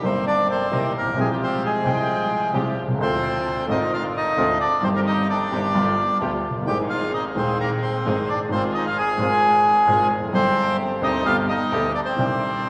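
Tango in C minor at 131 BPM, played with a rubato feel that gives this melancholic, passionate fragment of a longer piece its pull and sway. A reedy, airy bandoneon carries the melody up front from start to finish, ranging from G3 up to Ab5. A warm baby grand piano sits close alongside it as accompaniment, reaching down to Eb1 for deep bass anchors. Further back, a dark string section adds soft-attack bowed stabs, played sul tasto with light vibrato and a smooth top. The harmony moves from Cm7 through Dm7b5 and G7 to Ab and Fm7/Ab, then settles on Gsus4 and G before closing on Cmadd9 at 12.2 seconds. A church reverb with a 2.8-second tail lends the whole performance a resonant, hall-like space.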